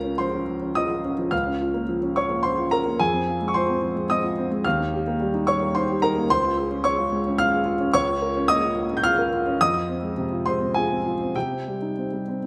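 An intimate, boxy grand piano sits up front with its action noise clearly audible, playing alone across this 12.5-second passage from a longer neoclassical minimalist piece. In a rubato 3/4, it moves reflectively through a melancholic cycle of Db, Bbm/Db, Fm and Eb before closing on Cm, spanning the keyboard from Db2 to G6. A slapback echo on the piano and a light reverb in the room add a faint sense of space around its close sound.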